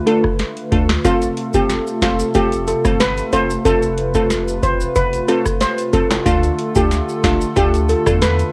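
Heard through a lo-fi cassette haze in a digital ambience, this sultry, bouncy dancehall excerpt at 92 BPM sets a shimmering steel pan melody over bright detuned wavetable chord stabs, a hollow flute-like pad with chorus and sidechain pumping, a booming up-front analog drum machine with deep kick, crisp snare, rim click and metallic hats, a punchy sine sub bass entering at 0.7 seconds, and quiet maracas and timbales from 1.0 seconds, moving from Dm to F and back to Dm.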